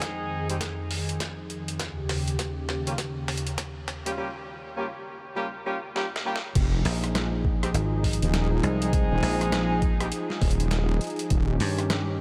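Gritty and funky, this swung glitch hop passage opens with a build-up in which a warbling, detuned analog pad sweeps through a filter and pumps against the sidechain, while a loose jazz-style horn section with light vibrato punches out stabs through delay. Driving it are a tape-warm, pitched-down boom bap sampler kit with crash, hats, rim clicks and a medium-tuned snare, plus a thumpy electronic kick, both sampler-style and compressed. At 6.6 seconds the drop arrives with a heavy, saturated sawtooth wobble bass, joined moments later by a punchy, foam-muted slap bass up front, and the horns fall away at 10.1 seconds.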